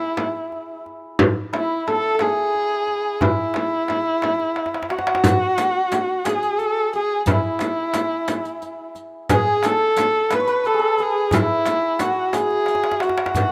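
Persian modal ensemble music in a warm, stately mood at 59 BPM in a straight 6/8, where a dark, woody bowed kamancheh sings the melody up front with vibrato and portamento, a shimmering, ringing hammered santur carries a second line in the background, a small, bright, band-limited frame drum played with hard hands sits forward beside a tight, saturated tombak, drum fills mark the close of each section, and a close riq with bright jingles joins at 5.2 s as the music settles into E dastgah mahur, all in a rough home demo mix with light reverb and studio ambience cut from a longer piece.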